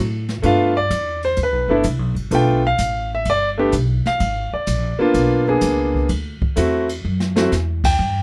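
A woody, thumpy pizzicato upright bass opens this brief, warm, swinging jazz piano trio cut at 127 BPM in 4/4, joined at once by a brushed kit with dark cymbals and a boomy kick, while an intimate, clear grand piano, its action noise audible up front, solos over G9, G#dim7 and D9 chords in light reverb before a drum fill at 7.0 seconds.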